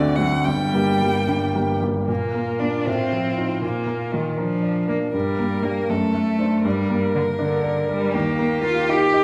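Urgent and dramatic, this brief excerpt of a quick classical-period piano trio movement in a rubato 6/8 sets a rich, vibrato-laden bowed violin melody above a smooth, even cello second line, while a clear, intimate baby grand piano with audible action noise and long sustain supplies the accompaniment, all bathed in a wet recital-hall reverb as the harmony moves from G minor toward an E-flat close.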